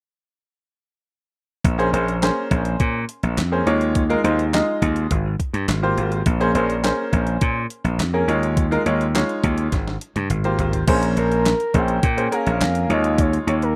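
Funky and danceable, this early-eighties boogie funk excerpt in Bb dorian moves at 104 BPM in a straight 4/4, with a punchy slap bass and a thumpy, overdriven 12-bit drum machine of handclaps, toms and crash starting at 1.6 seconds, a brilliant baby grand piano comping through Bbm9, Eb9sus4 and Abmaj13 chords, a drum fill at 9.7 seconds, and a smooth, gliding portamento lead with chorus and vibrato entering at 11.2 seconds, all in a rough home-demo mix with digital ambience.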